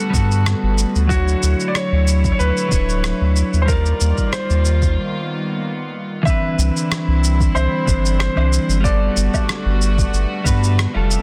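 A straight 4/4 groove at 93 BPM rolls along on a soft electronic kick drum, re-recorded in a large room, with a gritty, tape-tinged sampler kit of shaker, rim click and woodblock that carries a touch of soft clipping on the snare. This is a smooth, sunny piece of sunset chillout, cut from a longer track. Underneath sits a round, sine-like sub bass placed up front, deep and sustained with a fast attack. A clean, picked electric guitar, compressed and bathed in tape echo, supplies the accompaniment. A dark, distant studio string section holds bowed chords with a reedy, gut-string period tone and light vibrato, while a clear grand piano carries the melody through a digital delay. After a short break at 5.0 seconds on an altered G7, the harmony settles into C major at 6.3 seconds over lush major-ninth chords, all framed by light reverb and a dense, heavily limited modern master.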